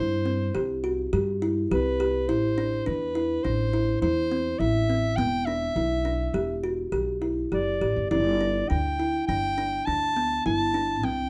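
Contemporary chamber music in an uneven 5/4 at 103 BPM, restless and hypnotic, where a soprano saxophone with light vibrato carries a classical-style solo melody over hollow, woody kalimba arpeggios with a bright thumbnail pluck and a growly, thumpy pizzicato upright bass, moving through C, Am, Em7 and Gsus2 in light reverb, in a brief excerpt tuned to A4 = 438 Hz.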